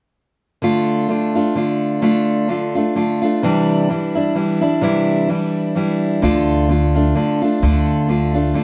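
Acoustic folk in a melancholic, intimate mood, this short clip in D minor moves at 129 BPM in a swung 3/4, with an up-front picked dreadnought steel-string acoustic guitar, finger squeaks audible, carrying the accompaniment from 0.6 s through Dm and Cadd9 chords, joined at 6.2 s by a woody pizzicato upright bass on a low D, the pair sitting in moderate studio reverb within a dark, warm production.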